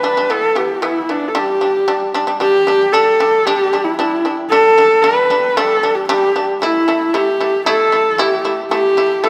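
Proud and galloping, this Mongolian folk piece in a straight four-beat metre is cut from a longer work. A horsehead fiddle carries the melody, played by a single bowed player whose husky horsehair tone has a soft attack, a smooth top, expressive vibrato and sliding portamento. Beneath it, a fretless shamisen plucked with a plectrum plays arpeggios in a lower register, its buzzing, percussive acoustic sound giving the music a warm drive. Both instruments sit up front throughout, with the fiddle the louder of the two, and a moderate scoring-stage reverb lends a sense of space. High notes ring out at 0.3, 1.4 and 6.6 seconds as a short opening passage gives way to a longer second section.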